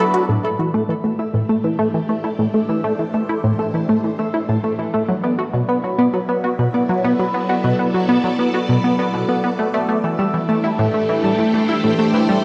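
Ambient in A dorian at 100 BPM, this hypnotic, expansive excerpt rests on a tight, driving sequenced synth riff, detuned and sawtooth-edged with a plucky filter, chorus and delay, sitting up front in the mix. From 0.3 s a fingerpicked concert harp rises in with ringing arpeggios through delay, while a vintage string machine fades in beneath it with swirling, bright sustained chords colored by ensemble chorus and phaser. The chords move from Am to Bm7 at 5.1 s and back to Am, all bathed in a concert hall reverb and the warbling pitch drift of worn cassette tape.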